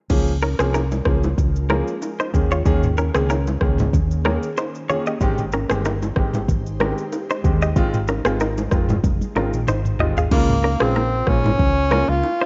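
A breathy, up-front tenor saxophone with vibrato and scooped notes enters at 10.3 seconds over a joyful, sunny afrobeats groove, where a round, dark hollow-body bass, a clear baby grand piano, a twangy clean electric guitar riff with tape echo, an electronic afro-pop drum kit with a deep kick, very quiet congas and bongos, and a faint ethereal pad share a rough home-demo mix with light reverb, the hi-hats dropping out after a drum fill.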